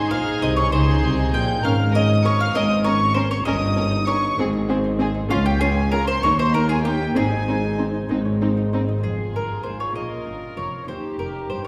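A picked, woody mandolin carries the melody up front from the start, joined high above by a violin section with light vibrato and gut-string tone, while a second violin section adds its own line beneath, and a reedy viola section and a bright, delicate fingerpicked lute sit in the background. Dark cellos and a rich double bass section anchor the bass from 0.1 s in this lively, festive baroque-style concerto movement in Ab major, moving in a straight 6/8 at 65 BPM. Heard from further back in a wet scoring-stage space, this fragment cut from a longer piece shifts at 9.0 s from its opening Ab-centred progression to a minor-tinged turn through Fm, Bbm7 and Eb7.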